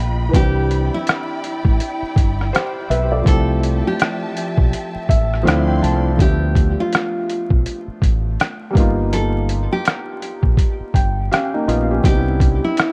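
Swung sixteenths from a muffled sampler-style drum kit with a thumpy kick carry this nostalgic, reflective lo-fi hip hop fragment, alongside a round, dark fingered electric bass up front, a soft felt-muted upright piano playing through cassette tape and dub echo with fills from 4.7 s, a fingerpicked nylon-string guitar melody trailing its own dub echo, and bowed strings with vibrato and portamento holding sustained chords until 6.2 s, inside an echo-heavy mix laced with vinyl crackle.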